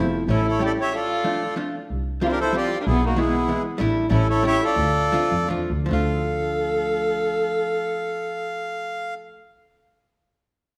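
A hollow-body archtop guitar, clean and picked, opens alongside a bowed double bass with a soft, floating tone. A reedy, up-front accordion then takes the melody at 0.3 s, with a woody, distant violin tracing a second line beneath it. This nostalgic, whirling musette waltz in D minor moves in a rubato 3/4 between 143 and 193 BPM, pausing for a break at 0.9 s and slowing down from 3.8 s, all wrapped in the wet reverb of a recital hall in this fragment cut from a longer piece.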